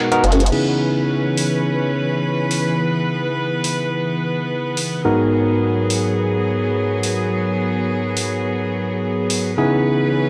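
A swung 16th-note groove at 106 BPM in 4/4 drives this funky, playful glitch hop excerpt in C# dorian, cut from a longer piece. It opens on a band accent, with a drum and bass kit of layered electronic hits, metallic hats and crash cymbal sitting low in the mix, re-recorded in a small room, and a drum fill at 0.2 seconds. A formant-sweep wobble bass, detuned and chorused with tube saturation, punches in up front on a deep F#1, but only until 0.5 seconds. Barky tine electric piano stabs, lightly overdriven through a combo amp with 12-bit sampler grit and tape echo, carry a filter sweep from 0.5 seconds to the end. An earthy chamber string section holds sustained bowed chords with light vibrato, moving between G#m7 and C#m7, and the whole cut has a dry, gritty hardware sound with light reverb.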